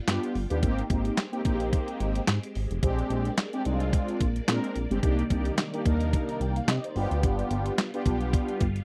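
Funky and danceable, this short cut of early-eighties boogie funk moves at 109 BPM in 4/4 with a light 16th-note swing, sitting in C minor. A crisp 8-bit digital drum machine drives it up front, with a thumpy kick, a medium-tuned snare, handclaps and hi-hat carrying a tape-warm, sampler-style character despite having been re-recorded in a large room. Alongside it, also up front, a chorused synth bass blends pulse-wave and sawtooth tones with pulse-width modulation and a plucky filter, sounding glossy and retro while holding notes with a fast attack. Mellow synth brass plays accompaniment in a brassy, round, dark voice built from detuned sawtooths, with a filter sweep, chorus and phaser. Further back, a phased string machine holds swirling, warbling chords with a slow attack and long release, its bright sound thickened by ensemble chorus and phaser. The chords move from G7 through Abmaj7, Bb13 and Cm9 before returning to G7 at 7.0 seconds, all in a dry, close studio sound with a 1970s feel.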